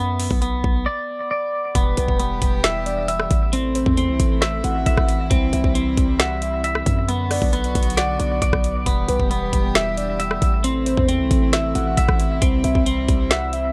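Up-front trap drums with a knocking kick, woody snare, metallic hats and a gritty 12-bit sampler edge drive this eerie, menacing half-time hip hop piece at 135 BPM in E minor, over a punchy, heavy 808 bass and bright, twangy clean electric guitar arpeggios bathed in lush chorus and digital delay, with a break from 0.9 to 1.8 seconds before a reedy, gut-string chamber string section enters on sustained chords at 1.8 seconds and a round, dark octave-layered synth lead with chorus and delay adds a second line in the background from 2.0 seconds, in a dry mix.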